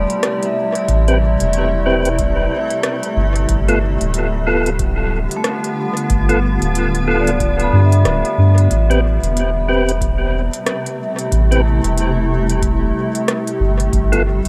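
Light reverb and a digital ambience give this ambient dub excerpt a spacious, hazy air, with a soft, round sub bass sitting up front beneath everything else. At 92 BPM in 4/4 with a 60% swing on the sixteenths, the piece sits in A minor, tuned to A4 = 436 Hz, and moves between Am7 and G7. A cloudy granular pad holds blurred, evolving chords with a slow attack and long release, its own built-in reverb smearing each change. A vibraphone struck with medium hard mallets, motor off, plays dark, metallic arpeggios through tape echo, while a percussive tonewheel organ adds mellow, lightly overdriven stabs from 1.1 seconds, colored by chorus vibrato, a fast rotary speaker and dub echo. An organic electronic kit supplies smooth hi-hats and rim clicks, overdriven and sent through dub echo with a small-room character, and a deep, tape-warm analog kick joins very quietly at 0.9 seconds.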